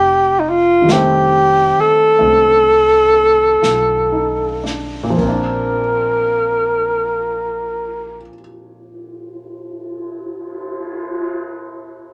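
Swung eighths in 4/4 drift at a very slow 37-48 BPM, easing back further over the first 5.2 seconds of this romantic, intimate jazz ballad excerpt in Bb major, which moves from F7 to Bbadd9. A breathy, subtoned alto saxophone with vibrato sits close and up front carrying the melody over woody pizzicato upright bass, both stopping at 8.3 seconds, while a baby grand piano with audible action noise and short sustain accompanies. A small-room brush kit with dark cymbals and a boomy kick sits softly beneath, inside light reverb.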